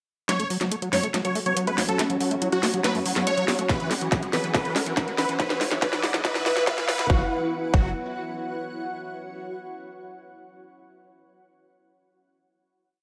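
A driving, alien psychedelic trance build at 141 BPM opens with a huge, detuned supersaw riff and a squelchy, screaming acid line that loops in three steps against the bar under a filter sweep, both pumping with tape echo, alongside an overdriven drum kit of bright hats and cracking snare and a round, deep bass galloping in sixteenths. A cloudy granular pad of slowly shifting chords, a faint drone with nasal, moving overtones, a very quiet formant-swept wobble bass and a soft riser fill in the background. A punchy four-on-the-floor kick arrives at 3.7 seconds, and a lush hall reverb carries the piece into its final chord from 7.1 seconds.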